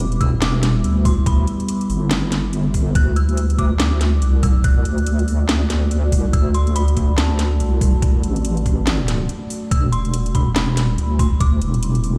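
Meditative and brooding, this deep dubstep excerpt moves at 142 BPM in a half-time feel with a swung sixteenth-note lilt, resting on Em before shifting to D at 3.0 seconds and returning to Em at 9.7 seconds. A deep, soft wobble bass sits up front, its detuned square-and-sine tone wobbling low alongside a thumpy, pitched-down electronic kick with sampler-style grit and a small-room character. A garage drum kit adds a cracking snare and metallic hats with a tape-warm, layered finish, both drum parts sent into studio reverb. Above them, a moody ambient pad holds sustained chords with a slow attack, sub octave, moving notch and long release, washed in chorus and its own reverb. An eerie, inharmonic FM synth bell carries the melody high up, its mellow, decaying notes roughened by vintage 12-bit sampler grit and trailed by dub echo. A short break arrives from 9.3 to 9.7 seconds, and the whole mix sounds as if played through a big sound system in a bare room, steeped in large reverb.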